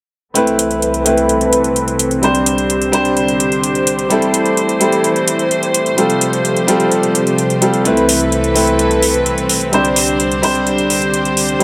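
A clear, boxy baby grand piano opens this anthemic, triumphant festival progressive house excerpt, its tape-echoed accompaniment sitting up front from 0.3 seconds. Soft-attack, floating bowed strings hold sustained chords alongside it through a low-pass filter sweep, while metallic, tape-toned electronic hi-hats keep a straight pulse. A huge ambient reverb with a long 5.8-second tail surrounds the performance.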